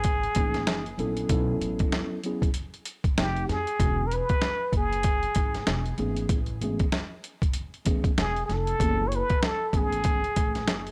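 A plunger-muted trumpet with tape echo, vibrato and scooped notes carries a clear, jazz-style solo from the start over a pitched-down, overdriven sampler-style drum kit with a thumpy kick and a woody pizzicato upright bass, while a clean tine electric piano enters at 0.4 s on harmony drifting through F#m9, B7sus4 and Amaj9, all in a nocturnal, mellow jazz-hop excerpt at 96 BPM in F# dorian with a swung 16th feel and a dry, gritty small-room sound.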